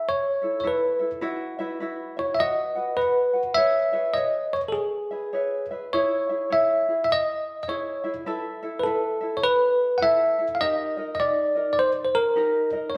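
A bell-like tine electric piano and a fingerpicked tenor ukulele open together in this sunny, languid Hawaiian excerpt, taken from a longer piece and set to an unhurried, swung 4/4 feel. The electric piano carries the melody, sitting bright, clean and up front in the mix. The ukulele, acoustic and light, supplies a softer accompaniment further back. The opening passage moves through suspended chords such as Asus2 and Bsus4 before settling on E6. At 5.9 s the harmony turns to C#m, and the second passage drifts through Asus2 to a closing D#. Both instruments play live in a stone room whose reverb lends the sound a gentle, echoing glow.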